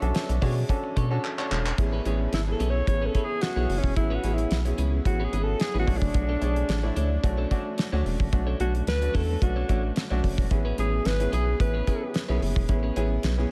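A studio sound with light reverb frames this slick, late-night slice of early-eighties boogie funk, cut from a longer piece and moving at 110 BPM in a straight 4/4, tuned slightly below standard pitch. Up front sit a damped 70s drum kit with a fat snare, tight kick, hi-hat and handclaps, and a rubbery square-wave bass whose hollow, bouncy filter pluck decays into a dark, resonant low end. A clear, slightly worn grand piano holds the accompaniment with long sustain, while a clean, picked electric guitar riff, compressed and bathed in lush chorus, stays in the background. After a drum fill at 1.2 seconds, the harmony moves between Bm9 and Amaj9, and a breathy alto saxophone enters at 2.3 seconds for a solo. Its smooth top, light vibrato and punchy pop-style phrasing trail through tape echo until 12.1 seconds.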